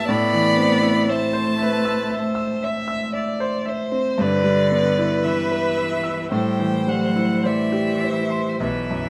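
Set in a rubato 4/4 at a slow 50-59 BPM, this short cut from a longer classical piece is a yearning, melancholic romantic movement for piano quartet. A rich, focused violin carries the melody between D5 and B5 with vibrato, sounding somewhat distant, while a second violin, warm, smooth and even, plays a supporting line just beneath it. A bowed cello adds another second line with a close, focused tone, sitting in the background of the blend. The concert grand piano is the most prominent part, clear and up front, with a deep bass and a smooth, vintage character as it spans a broad range in accompaniment. The harmony moves from A minor to E minor over G at 4.2 seconds and settles on A minor seventh at 6.3 seconds, all wrapped in a moderate large-studio reverb across the 9.1-second passage.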